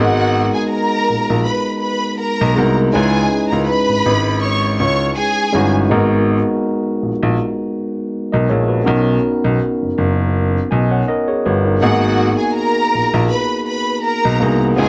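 Lush, vibrato-rich strings, a gritty, barky overdriven electric piano and an intimate baby grand carrying the low bass line open together in this cinematic, bittersweet 1970s-style soul excerpt in G# minor at 81 BPM with a gentle sixteenth-note swing. The strings drop out at 5.7 seconds and return at 11.8 seconds over a G#m9, C#m7 and Bmaj7 progression, all in a light studio reverb.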